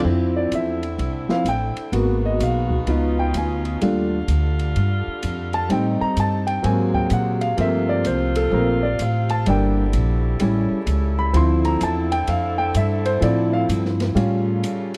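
A clear, intimate concert grand piano takes the solo up front, its action noise audible, over woody pizzicato upright bass, a mellow saxophone section holding soft-attacked chords with vibrato, and a dark, small-room drum kit with a punchy kick on hi-hat, snare and ride, in this sultry, swinging big band jazz cut from a longer piece, captured in a dry, close 1970s-style studio sound, with a brief break after the bass stops at 14.6 seconds.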